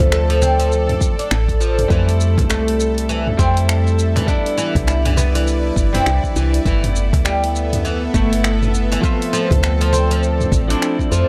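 A peaceful organic downtempo excerpt opens with a round, dark FM bass up front, a deep layered electronic kick and a small-room deep house kit of finger snaps, hi-hat, shaker and toms, with a snappy cajon tucked far back and a swung sixteenth-note feel. A nasal, string-like drone with vibrato and its own reverb sustains tense chords from Dm7 through Fmaj7, Cmaj9 and G69, while a clean, twangy electric guitar with tape echo plays accompaniment; the bass, drone and guitar all carry a sidechain pumping. From 0.1 seconds a bright, plectrum-plucked oud with double strings spins arpeggios through tape echo, and the whole excerpt has a dry, gritty hardware sound.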